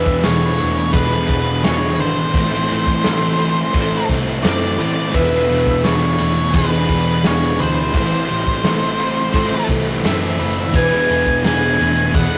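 A straight 4/4 pulse from an up-front, loose indie drum kit with a tight kick, medium-tuned snare, ride and crash drives this wistful, hazy shoegaze and dream pop excerpt, where a dark octave-fuzz lead guitar carries the melody over background riffs from a fuzz guitar, a crunchy overdriven guitar and a double-tracked overdriven guitar with tremolo, fingered arpeggios from a slightly broken-up guitar through a small old amp, and a round, foam-muted vintage bass, all moving between E7 and Am in a rough, tube-saturated rehearsal-room sound with moderate stone-room reverb.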